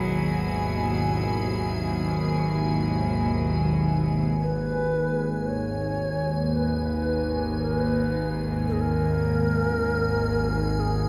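A tense, sawtooth-edged drone with phaser and vibrato sits up front in this cavernous, ominous dark ambient fragment, joined from the start by a nasal, gut-string chamber cello section holding sustained chords, very quiet bronze gamelan-type gongs tracing arpeggios and an icy, crystalline chorused pad, before an airy bamboo shakuhachi with tape echo carries an expressive melody from 4.4 seconds, the whole mix set in a wet, echo-heavy chamber reverb.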